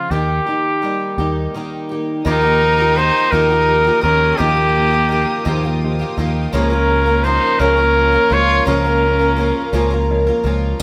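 Stirring and wistful, this indie folk excerpt moves at 56 BPM in a 6/8 lilt, with an up-front trumpet carrying the melody in a soft-attacked, lightly vibrato, vintage classical style over a dark fingerpicked steel-string guitar, a shimmering, octave-doubled twelve-string and a round, amped electric bass. From about 2.3 seconds the arrangement builds: a nasal bowed fiddle adds a smooth second line, a chamber string section holds sul tasto chords in the background, and a felt-muted upright piano enters very quietly, adding mellow fills at 5.5 and 9.7 seconds. The band plays live in one room with moderate large-studio reverb, and the harmony moves from Eb through Ebadd9 to Bbm/Db.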